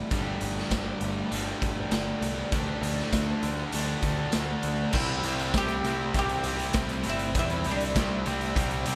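Set in a moderate scoring stage reverb, this bittersweet, restless quiet-loud alternative rock fragment at 99 BPM has a gritty, boomy, up-front garage drum kit driving a compressed fuzz guitar in the background, a high-gain distorted guitar and a punchy overdriven bass through Gsus2, Dsus4 and Cadd9 riffs, before a woody, double-strung oud with digital delay takes the melody from 5.0 s to 8.6 s.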